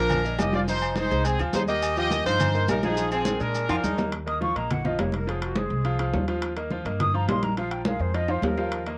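A brilliant, punchy horn section opens this sunny, festive salsa fragment at a brisk 209 BPM in Eb major, carrying the melody over a bright grand piano with audible action noise, a woody, thumpy upright bass played pizzicato up front, and percussion of ringing agogo bells and timbales, hard-handed congas and grainy maracas set in the background. The horns, piano and later soloists share a cassette-tape coloring, with plate reverb on the horns, and the whole piece sits in a small booth that sounds like a home recording. At 3.7 s a warm baritone saxophone with vibrato slips in briefly alongside a drum fill, and the horns and maracas drop out soon after. From 4.3 s a breathy, hollow jazz flute with a straight tone and soft attack takes over the melody as a distant solo, trailed by analog delay, while piano, bass, congas and bells keep going. The harmony circles Ebsus2, Fm7, Ebadd9 and Bb7sus4 twice, and a second drum fill lands at 8.3 s before the clip cuts off at 9.0 s.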